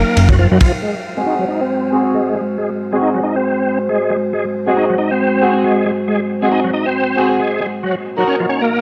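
Playful and funky, this short breakbeat cut swings its sixteenth notes as the chords move from Gb6 to Ab7 and back to Gb6. A bright tonewheel organ carries the riff up front throughout, lightly overdriven and shouting through chorus vibrato, a fast rotary speaker, tape echo and vintage 12-bit sampler grit. Beneath it, a deep, moody analog pad holds sustained chords with chorus and sidechain pumping. A fat, detuned analog bass sounds only briefly at the opening, and a crunchy breakbeat kit of kick and ride cymbal appears for just a moment at 0.2 s, saturated, with a tight kick and a rolled-off top. From 1.2 s a dark studio string section adds woody, bowed stabs with vibrato and tape echo, and both the strings and the organ carry a filter sweep from 0.8 s, all set in a dry hardware sound with moderate digital room reverb.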